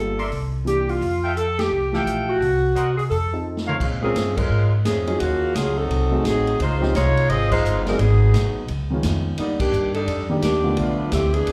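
Energetic, swinging big band jazz at 172 BPM, caught live through a club's PA with moderate reverb, where a smooth, tight saxophone section carries the melody up front over a woody, growly pizzicato upright bass, warm baby grand piano accompaniment and a swinging big-band drum kit with a punchy kick, while a mellow, distant trumpet section adds stabs until 3.8 seconds, with a drum fill at 3.5 seconds and band accents punctuating this snippet of rich jazz harmony.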